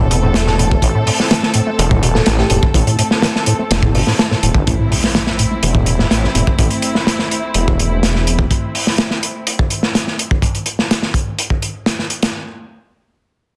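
Opening on a drop, this energetic, raw breakbeat excerpt in A minor at 125 BPM sets thick, menacing detuned saw bass and a rubbery, resonant acid bass riff, tinged with cassette tape and dub echo, under veiled con sordino strings pumping with sidechain, while a crunchy, gritty drum kit with a tight kick sits up front, a brief bell-like FM electric piano melody sparkles in the background at 2.1 seconds, and an electronic impact at 4.8 seconds arrives as filter sweeps move across the acid bass and strings.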